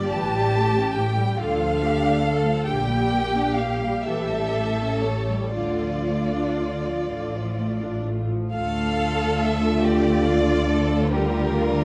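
The violins open on a solemn, yearning melody, sung with vibrato and portamento over a second violin line, while the violas lay an intense, smooth-topped accompaniment beneath them. Cellos and double basses join at 0.1 seconds with a rich, expressive bass, the cellos sitting in the background and the basses close at hand. This slow romantic movement for string orchestra moves in a rubato 6/8, its minor-key harmony circling through dominant sevenths and settling at 11.1 seconds on a rootless half-diminished chord. The violas stand a little forward of the rest of the ensemble, their light vibrato contrasting with the fuller vibrato of the other sections. A recital hall's wet reverb gives the dark, warm production its glow, and the passage, cut from a longer piece, ends at 11.8 seconds.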